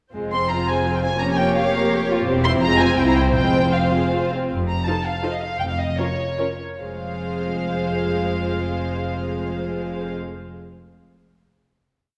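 Urgent and restless, this short, quick classical-period movement for string orchestra in F minor moves in a rubato 3/4 at 137-172 BPM, with an up-front violin melody floating above dark, woody second violins in flowing broken chords and after-beat chords, intimate violas in sustained chords, pure cellos with soft sustained bass on the beats and close double basses doubling the bass line, all bowed sul tasto in a reverberant hall, slowing down from 3.9 seconds into a coda and a final F minor chord at 6.8 seconds.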